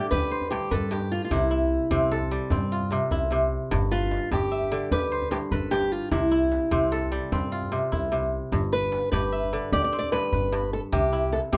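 A boxy, ladder-braced acoustic guitar carries the fingerpicked melody up front beside a bright, ringing kora spinning crisp arpeggios, while a deep djembe with metal rattles sits softly in the background and a woody, thumpy upright bass joins at 0.1 seconds, shaping this joyful, hypnotic West African string music in 12/8 that alternates between G and C chords under light reverb, cut from a longer piece.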